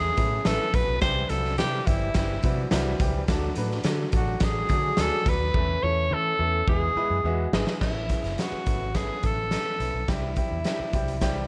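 A warm, soft-attacked tenor saxophone sits up front in this uplifting, joyful slice of uptempo 1960s-style soul, carrying a jazz-styled solo melody from the very start. Beneath it, a clear upright piano adds woody, long-sustaining accompaniment, while a vintage muted fingered electric bass supplies a round, foam-muted low end. A raw garage drum kit joins at 0.2 seconds with a fat snare, punchy kick, hi-hat and crash cymbal, its gritty, saturated tone and rolled-off top giving the groove a bright stone-room character. A drum fill from 5.5 to 7.8 seconds leads into a new section, where the chords return to the opening Aadd9 before moving to C. Light reverb and small room ambience wrap the dark production, and the recording is cut from a longer piece.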